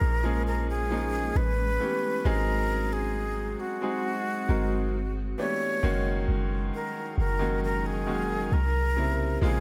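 A breathy, vibrato-laden jazz flute with a delay carries the melody of this late-night, longing contemporary R&B piece at 67 BPM from the first second, over a brilliant baby grand piano, a deep, boomy 808-style bass up front, and a cloudy, blurred granular pad drifting in the background through lush chords from Bbm7 to C7b9.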